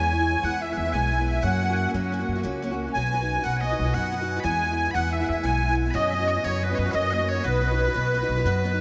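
A cheerful, bright Celtic slip jig in 9/8 opens with musette accordion, bagpipes, picked archtop guitar and upright bass sounding together from the first beat, moving at 120 BPM in dotted quarters with a straight feel in B major. The reedy, shimmering accordion carries the melody up front, its musette tuning and tape echo giving it a boxy, small-room character. Alongside it, loud, piercing bagpipes hold a continuous second line, while the acoustic archtop guitar supplies bright picked accompaniment with a subtle chorus and audible finger squeak. The woody pizzicato upright bass sits close and warm beneath, its steel strings anchoring a progression that moves from E to F# and B, then through E and a brief F#sus4 resolving to F# before settling back on B. The whole mix is dreamy and soaked in a huge ambient reverb with a 5.8-second tail, and this excerpt, cut from a longer piece, ends as the accordion stops at 8.6 seconds, just before the other parts at 8.8.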